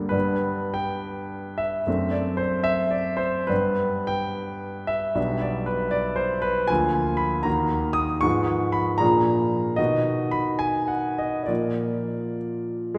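Swaying in 6/8 with a free, rubato pulse, this romantic character piece for solo piano drifts between 62 and 80 BPM counted in dotted quarters. It sits in G major and carries a stormy yet bittersweet mood across its 13 seconds, cut from a longer work. The concert grand sounds intimate and polished, with deep bass, long sustain and the noise of its action audible up close, spanning from B1 to Eb6. Its harmony opens on G and D7/F#. Around 6.7 seconds it darkens through Bb7/D, Ebm and Fdim/Ab, then passes Bb7 and reaches B at 9.8 seconds before settling on Bb. A wet concert hall reverb with a long tail places the listener further back in the room, wrapping the instrument's present, warm tone in an airy halo.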